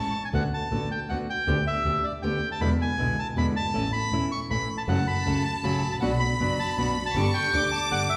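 In a rubato 3/4 at 158 BPM, this playful, nostalgic tango excerpt in D major sets a reedy, dark bandoneon melody up front over a fingerpicked nylon-string guitar with fresh strings and a bowed double bass full of vibrato and portamento, while an intimate chamber violin section, bowed sul tasto with a soft attack, sounds briefly at the very start and then returns with a second line at 4.9 seconds, all carried by the wet reverb of a recital hall.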